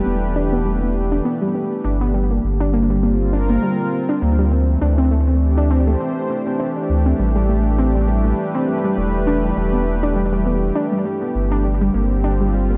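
IDM excerpt with an intricate, melancholic mood, where a smooth, detuned sawtooth pad holds chorused chords over a round sine sub bass with tube saturation entering at 0.1 seconds, while a warbling, lo-fi pluck with a dark sub-octave edge and filter sweep spins chorused arpeggios through tape echo, all set in an echo-heavy chamber reverb as the chords move from Em7 through Gm7, D5 and Am7.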